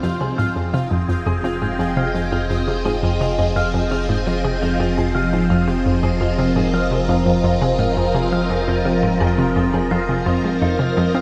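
A phased string machine fades in on a sustained, swirling Fm7 chord with ensemble chorus, joined throughout this 11.2-second cut of hypnotic, expansive sequencer-driven space music in F minor at 85 BPM by a detuned analog pluck riff with 12-bit grit and delay, clean, twangy electric guitar arpeggios echoing through analog delay, a deep round analog bass holding F1, and a pulsing gated texture glimmering in the background, all set in a dreamy mix soaked in plate reverb.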